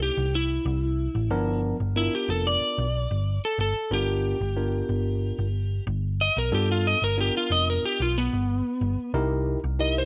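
Straight-eighth soul blues at a laid-back 92 BPM in 4/4, this gritty excerpt from a longer piece features an electric slide guitar, played with fingerpicks and slightly broken-up, soloing throughout the full 10.1 seconds alongside a dark, round, amped hollow-body short-scale picked bass, both sitting up front. A clean tine electric piano, heard through its built-in speakers, adds warm accompaniment in a digital ambience as the harmony moves from C7#9 to G7#9 at 1.3 seconds and back to C7#9 at 9.1 seconds.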